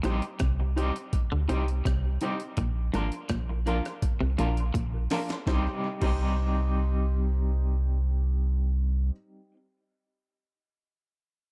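Roots reggae in a meditative, serious mood, this short cut pairs a round, deep dub sub bass up front with gritty, compressed sampler-style breakbeat drums whose thumpy kick and high-tuned snare bring a fill at 4.0 seconds before they drop out at 6.2 seconds, while a bright, twangy guitar riff with tremolo ends at 5.0 seconds, a slightly broken-up picked electric guitar adds tremolo and dub echo, and a worn, woody upright piano with audible action noise supplies dark stabs, all in a dry, echo-heavy mix.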